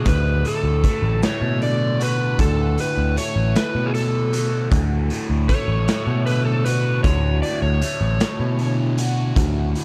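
An overdriven slide guitar, played with fingerpicks and soaked in tape echo, carries a trippy, hypnotic solo melody in this short psychedelic rock clip in 6/8, falling away at 8.8 seconds. Underneath, a dark, double-tracked electric guitar riff churns through a phaser, while a growly, up-front picked bass anchors the low end. A raw garage drum kit of hi-hat, punchy kick and medium-tuned snare sounds gritty and rolled-off on top, set in a bright, pumping stone room within a small-room ambience.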